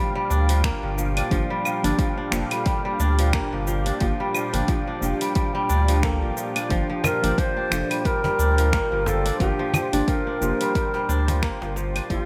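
Lightly reverberant and softly pumping, this excerpt from a longer organic downtempo piece sits on a Gm7 chord in G minor at 89 BPM, with a gentle 16th-note swing and a meditative, warm mood. A round sine sub bass sits up front, breathing with sidechain pumping under an electronic kick and a deep house kit of cabasa, claves, finger snaps and dark hi-hats, both drum parts carrying studio reverb. Fingerpicked kora arpeggios ring crisply near the front through a digital delay, while a mellow, wave-folded chord stab with chorus, cassette tape colour and delay, and a smooth detuned analog pad with a moving notch, stay in the background. A very quiet, breathy noise texture hovers high on a single G like distant wind. At 7.0 seconds a bright, reedy bass bansuri enters with vibrato and delay, joined by a snappy cajon played with hard hands in a small room, before the recording fades out from 10.3 seconds.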